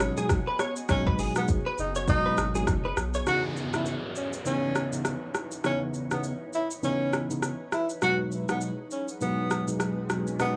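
Smooth and sultry, this afrobeats passage in C# minor sits at 101 BPM with a swung sixteenth-note feel. A breathy tenor saxophone with vibrato, scooped notes and tape echo leads over a mellow tine electric piano and an up-front electronic drum kit of deep kick, metallic hats, rim click and shaker, all framed by a dry, gritty hardware sound with light reverb. A thick, saturated sine sub bass and a clean, direct-recorded electric guitar riff with chorus and tape echo drop out at 3.2 seconds; a background downlifter and riser enter at 3.3 seconds, while an ethereal, detuned pad with phaser and built-in reverb holds G#m7 and C#m9 chords at a distance.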